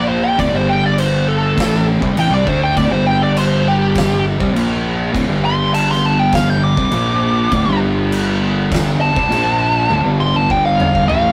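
Stoner and doom metal at 101 BPM in a straight 4/4, ominous and hypnotic, heard in an 11-second excerpt cut from a longer piece. A fuzz lead guitar sits up front, carrying a wah-inflected solo melody that ranges from G4 to D6 across the whole passage. Beneath it, three fuzz rhythm guitars grind out the riff between D2 and D4: a thick, dark one at full weight, a second thick one kept very quiet, and a double-tracked fuzz guitar in the background. A growly, overdriven fingered bass holds down the low end, while an oversized low-tuned drum kit enters at 0.4 seconds with a punchy kick, fat snare, toms and dark crash cymbals, closing with a fill from 9.9 seconds. The harmony circles D5 and G5 power chords, touching Bb5, Csus2 and Am7/C along the way, all set in a pumping stone room with a 1.1-second reverb and the gritty, saturated feel of a rough rehearsal-room recording.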